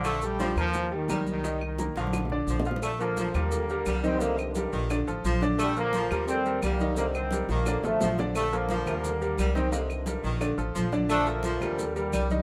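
Festive, danceable salsa at 174 BPM in Bb major, cut from a longer piece, where a brilliant, close-miked trombone section carries the melody until 2.6 seconds before a mellow, distant and roomy trombone section takes it over at 2.8 seconds, over a tight saxophone section with light vibrato on a clear second line, a bright, worn baby grand piano with audible action noise, an up-front pizzicato upright bass that sounds woody and dark, thin-skinned compressed congas, grainy maracas, background claves and very quiet round, low-tuned bongos and cowbell, all within light reverb.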